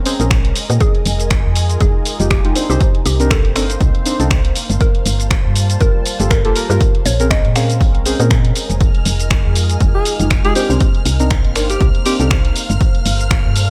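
A swung 4/4 deep house groove at 120 BPM anchors this warm, deep excerpt in F minor, with an up-front, punchy electronic kick and an analog drum machine of finger snaps, hi-hat and shaker, both re-recorded in a large room. A woody, round FM bass carries the low end under sidechain pumping, while soft, warbling chord stabs with a filter sweep and tape echo move through minor ninth chords from Bbm9 to Fm9, Cm9 and Gm9. Behind them sit a moody, detuned analog pad and an ethereal, airy pad with ensemble chorus and built-in reverb, both pumping with the kick. A mellow, mallet-like synth pluck with chorus and delay plays the melody until 8.7 seconds, after which a shimmering string machine of violins enters high in the background. At 9.9 seconds a breathy, close-miked alto saxophone adds a brief jazz-style solo with vibrato and subtone, all set in a digital ambience.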